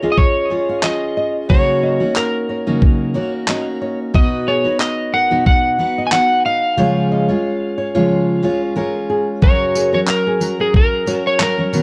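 A dark, lightly reverberant production frames this carefree, heartfelt acoustic pop passage from a longer piece, where a slightly broken-up electric slide guitar played with fingerpicks carries the melody through delay over a full-bodied, picked jumbo steel-string acoustic guitar, while a fingerpicked classical nylon-string guitar adds delayed arpeggios in the background and a gritty, compressed, tape-toned sampler-style soul drum kit of thumpy kick, handclaps and tambourine joins at 0.2 s with a light sixteenth-note swing.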